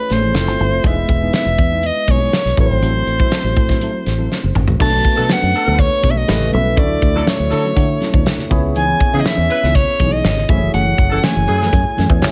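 Polished 1980s jazz-funk pop with a glossy, urban mood, this cut-off passage puts a bright, forceful soprano saxophone up front with vibrato over a barky, lightly overdriven tine electric piano with analog chorus and a dark, clean electric guitar riff sitting in the background with lush chorus. A round, foam-muted fingered bass and a punchy studio drum kit with a fat snare drive the groove, and a drum fill at 4.3 seconds leads into a second section. There, very quiet, low-tuned congas and a tight, roomy horn section playing a second line join from about 5 seconds over a run of rich seventh and ninth chords.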